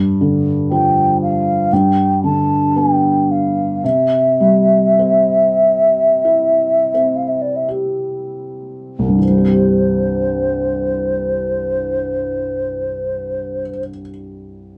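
Rubato and unhurried in 4/4 at roughly 39 to 60 BPM, this wistful, pastoral Celtic slow air in C major, tuned slightly flat to A4 = 437 Hz, slows down through its first 9.2 seconds before moving into a second passage. A hollow wooden flute carries the melody up front from 0.7 seconds, airy and soft in attack with gentle vibrato and rolled-off highs, while a felt-muted upright piano accompanies with a dark, intimate, vintage tone and audible action noise. The two play live in one room with moderate studio reverb, and the recording is a fragment cut from a longer piece.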